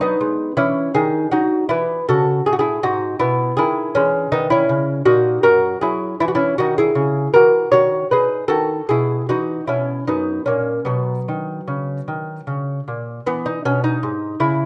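Classical music in a baroque-style dance for solo lute, this short passage taken from a longer piece moves in a lilting 3/4 at 79 BPM with a flexible, rubato feel that keeps it dance-like and radiant. The lute sits up front, its fingerpicked gut strings sounding mellow and delicate, with the double courses and some octave-doubled strings adding a shimmering fullness across a range from F#2 to C#5. The music opens in E major, then turns toward B major from 4.0 s, passing through C#m and F# before settling on a B cadence. At 13.3 s the opening phrase begins again on E, and the passage breaks off at 14.7 s. Close, detailed microphones catch every pluck, while a moderate recital hall reverb with a 1.4-second decay gives the instrument a gentle glow, tuned slightly bright at A4 = 444 Hz.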